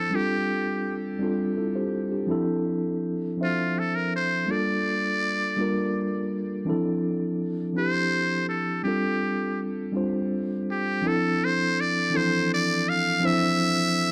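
Yearning and late-night in mood, this brief R&B excerpt sways in a slow 6/8 with a straight feel. A mellow, clean tine electric piano carries the accompaniment throughout, heard up front as if through its built-in speakers and moving through G7sus4, Dm9 and Gm9 before settling back on Dm9 at 11.0 seconds. Over it, a solo trumpet with a metal mute plays the melody from the start, its buzzy, raspy tone touched with light vibrato, scooped notes and a growling edge in a punchy pop style. Tape echo trails the trumpet lines, while a moderate studio reverb and a dark, warm production frame the pair.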